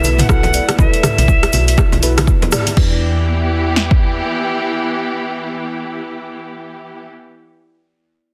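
A deep kick and punchy snare from an overdriven, up-front electronic drum kit drive this short afro house cut at 121 BPM in E minor, entering at 0.3 s with a 60% swing on the 16ths. A second overdriven kit layer adds metallic hats, crash, rim clicks and toms, while ringing congas struck with hard hands and a grainy, bright cabasa sit in the background. A woody FM bass with a round, dark tone pumps with sidechain compression, and a soft kalimba plays arpeggios with a hollow-box fingertip pluck through digital delay. A distant silver concert flute carries a brief tongued melody with vibrato and delay, over veiled con sordino strings holding sustained chords with vintage 12-bit sampler grit and a detuned, warbling chord stab treated with chorus. The spiritual, warm mood moves from B7sus4 to Em7 at 2.8 s, just after a band accent at 2.5 s, in a dense, heavily limited mix with light reverb.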